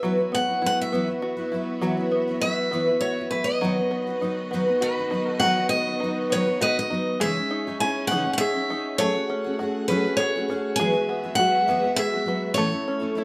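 A boxy, up-front steel-string acoustic guitar carries the melody from the opening moment, featured as a solo over the first 7.2 seconds. This peaceful, nostalgic acoustic folk piece in E major moves in a gentle 6/8 at 67 beats per minute, counted in dotted quarters. Beneath the lead, a second picked guitar with a full-bodied dreadnought tone supplies accompaniment, while a fingerpicked open-back banjo adds twangy, plunky arpeggios, and a dark chamber string section holds smooth, bowed chords with vibrato. The harmony opens on Esus2 and B/D#, then shifts at 7.2 seconds into a new section that moves through C#madd9, F#madd9 and Eadd9 before landing on A. Moderate studio ambience gives the ensemble a natural, intimate sense of space in this short cut from a longer piece.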